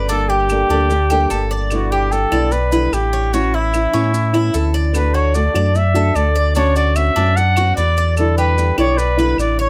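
A breathy, whispered trumpet with vibrato carries the melody up front in this relaxed stretch of Cuban son and guajira, over fingerpicked flamenco guitar with audible finger squeak, bright metallic arpeggios from a double-strung tres with slapback echo, a deep, full sub bass with octave, and grainy maracas and woody claves in the background, recorded with close, detailed microphones and light reverb.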